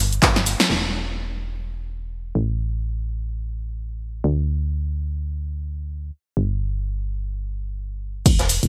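A round, mellow FM bass with a fast attack and sidechain pumping carries this bittersweet, soulful piano house excerpt in free time and E minor, while a punchy, tape-toned analog drum machine, a punchy electronic kick and a gritty, saturated garage kit tucked in the background break in only briefly at the opening, with a drum fill from 0.3 s, and make a brief return at 8.3 s, all bathed in lush hall reverb and bright 1980s-style digital sheen.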